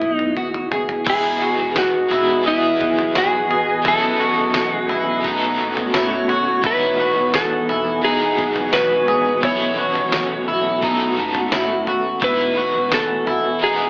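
A detuned 8-bit drum machine opens this ethereal, floating dream pop excerpt in E major at 86 BPM with a fill of thumpy kick, toms and crash, under a compressed slide guitar melody played up front, a cloudy granular pad of sustained Emaj7 and B9sus4 chords, picked arpeggios from a slightly broken-up guitar with subtle chorus, and a woody pizzicato upright bass sitting in the background. At 1.1 seconds a bright, double-tracked overdriven guitar joins with tremolo, and from 2.6 to 9.3 seconds a reversed, swelling granular texture drifts behind the band. Tape echo trails the slide, arpeggio and reversed parts, and the whole mix carries a lo-fi AM radio character inside a short, wet studio reverb.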